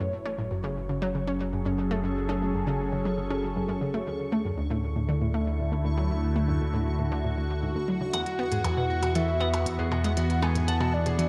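Hypnotic and cosmic, this ambient piece of sequencer-driven space music moves at 118 BPM in a straight 4/4 in F# minor, cut from a longer work. A swirling, airy analog pad holds sustained chords up front through phaser and chorus, while a bright, detuned analog pluck repeats a riff with chorus and delay. Beneath them, a deep, round analog bass, blending sawtooth and sine with ring modulation, anchors the low end. In the background, a bubbling texture of resonant, randomly stepped filter tones fades in slowly throughout. At 8.1 seconds a soft, breathy, flute-like synth lead enters with vibrato and analog chorus, joined by twangy, clean picked electric guitar arpeggios and clicky electronic hi-hats and percussion blips, both carried on delay. Under a moderate spring reverb and an echo-heavy mix, the harmony drifts from F#m7 to D and then to an open E7 chord.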